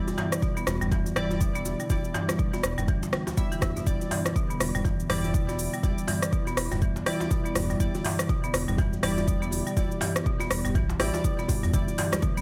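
Lightly reverberant, this excerpt from a longer afro house piece has a warm, spiritual mood, resting on a single Em7 chord with a swung 16th-note feel. An overdriven electronic kick sits up front beside a deep house kit of smooth hi-hats, rim click, shaker and toms, with a vintage djembe with metal rattles in the background. A round, dark analog bass and bright, woody marimba arpeggios pump with sidechain, alongside detuned analog key stabs carrying chorus and delay, while a very quiet ethereal pad sustains chords beneath; a drum fill comes at 11.4 seconds, and hard-handed congas enter in the background at 11.7 seconds.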